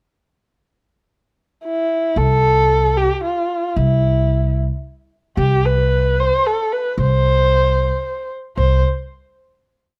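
A bowed kamancheh opens this short Persian modal ensemble piece at 1.6 seconds, its dark, smooth-topped tone shaped with vibrato, soft attacks and gliding portamento as a single player traces an ornamented modal melody in a stately, festive mood. An acoustic upright bass joins at 2.2 seconds with woody, thumpy pizzicato on steel strings, outlining a simple root-and-fifth line in a steady triple metre with a straight feel. The kamancheh carries a plate reverb that lends its expressive line a soft sheen, while both instruments sit up front in close, detailed microphones with a light sense of room. After a brief pickup, the piece moves through a single section that gives way to a final note at 8.6 seconds, and both parts stop at 8.8 seconds as the whole piece rounds off.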